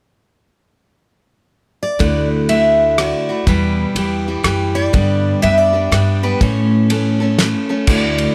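A swung waltz at 123 BPM in 3/4 sets a down-home, nostalgic honky-tonk and classic country mood in D major, heard in this short excerpt cut from a longer piece. A bright, picked dreadnought guitar carries the melody from 1.8 seconds, with a second up-front acoustic guitar picking accompaniment with audible finger squeak from 2.0 seconds, joined by a woody, growly pizzicato upright bass and a damped 70s drum kit with a fat snare, tight kick and dark cymbals. Under light reverb, the chords move from Dadd9 through Em and G to A.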